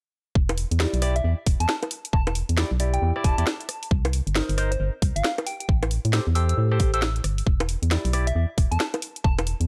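A dry, up-front mix opens this skippy, late-night two-step garage excerpt, built on a tight electronic kick and a garage kit of cracking snare, rim clicks, bongos and warm hats, all riding a swung sixteenth feel. A hollow, organ-like FM bass with a dark, percussive bite anchors the Em7 to Cm7 to Am7 changes, while a barky, lightly overdriven tine electric piano adds stabs colored by phaser and digital delay from 0.8 seconds. A round, gentle FM synth lead with a warbling vintage chorus and a sub octave carries the melody high above from 1.2 seconds.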